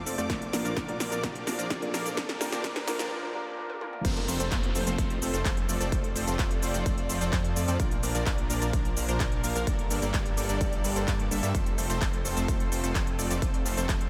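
A punchy, up-front supersaw stab drives this anthemic, triumphant festival progressive house excerpt at 128 BPM in F major, its detuned unison riff pumping against the sidechain and colored by a low-pass filter and delay, with a filter sweep across the opening build-up. Underneath, a thick, menacing detuned saw bass holds the low end, while a punchy, layered electronic kick sits up front from 0.3 seconds. An overdriven big-room drum kit adds a crisp-hatted, punchy snare, claps, shaker, toms and crash, with drum fills and a brief break before the drop lands at 4.0 seconds. A soft, felt-muted upright piano with audible action noise plays in the background only through the build-up, and a rich, bowed string section with light vibrato sustains chords behind the mix throughout, while a very quiet riser and downlifter sweep through the first half. The chords cycle through Bb, Gmadd9 and F, and the whole dreamy mix is soaked in a cathedral-like reverb.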